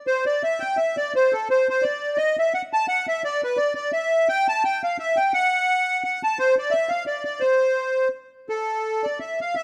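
A solo accordion with a reedy, sweet voice and light tremolo tuning carries this short, bittersweet musette fragment, playing from 0.1 to 9.6 seconds in a range from A4 to A5. The tune moves in a brisk, swung 3/4 at 171 BPM in C major, tuned to A4 = 439 Hz, and takes a new turn at 8.5 seconds. Close, detailed microphones keep the accordion up front, with a boxy small-room character and light reverb adding a nostalgic glow.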